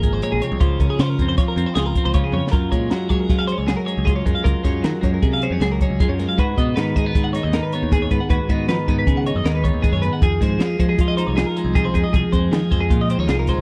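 Twelve-string electric guitars, picked electric bass and a compact cocktail drum kit open this wistful math rock and midwest emo excerpt at 156 BPM in 5/4: one guitar plays twangy, clean chords through spring reverb while the other sits up front with compressed arpeggios and a warbly pitch drift. The growly, direct bass runs low beneath a dark, smooth kit with a punchy kick and high-tuned snare, and a drum fill at 2.3 seconds leads into a longer passage moving from Gbmaj9 through Abm7 to Fm7. The dry, close 1970s-style studio sound has a bright character and carries some lossy compression artefacts.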